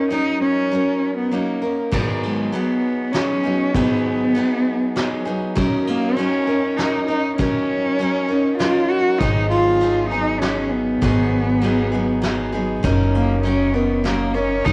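Acoustic folk in a haunting, intimate 3/4 at 99 BPM in G# minor, this excerpt pairs an up-front bowed cello melody, warm with vibrato, portamento and a soft attack, against bright picked steel-string acoustic guitar accompaniment, both carrying a cassette-tape tint, as brushed drums with dark cymbals enter at 1.9 s and a woody pizzicato upright bass joins at 9.2 s, all over G#m7 and D#m7/F# chords, moderate spring reverb and the small-room ambience of a home cassette recording.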